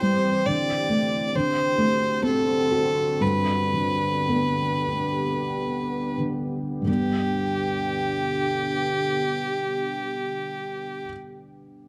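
In a rubato 3/4 that drifts between 42 and 69 BPM and slows from 0.5 to 6.9 seconds, this pastoral, nostalgic Celtic slow air in G major moves from D7sus4 through D7 to a resting G chord before a new passage begins at 6.9 seconds. A single bowed fiddle carries the melody up front with a rich, focused tone and light vibrato, while a felt-muted upright piano gives soft, intimate accompaniment with audible action noise and short sustain, lingering alone until 11.9 seconds. Beneath them a deep, moody ambient pad of detuned sawtooth and sine layers with a sub octave holds slow-attack chords, thickened by chorus and its own reverb, all set in a moderate recital-hall space captured with close, detailed microphones in this brief excerpt.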